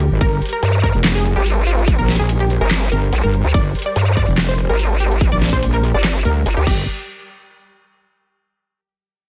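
This heavy wobble dubstep excerpt opens directly in the drop, with a saturated, sawtooth wobble bass growling up front over a G minor chord at 144 BPM in a half-time feel. A punchy electronic kick joins at 0.2 seconds, and at 0.6 seconds a second, nasal vowel-sweep wobble bass with a resonant formant filter adds its own chorused throb in the low register. The overdriven dubstep kit brings a deep snare, metallic hats, handclaps, shaker, ride and crash, all sounding re-recorded in a small room. Above the low end, a detuned unison pluck carries the melody with a filter sweep, short decay and delay, while huge, lush supersaw chords with a phaser sit very quiet in the background. The mood is chaotic and heavy, with a dry mix and a dark top end, and the harmony drops out at 6.9 seconds as the parts fall away.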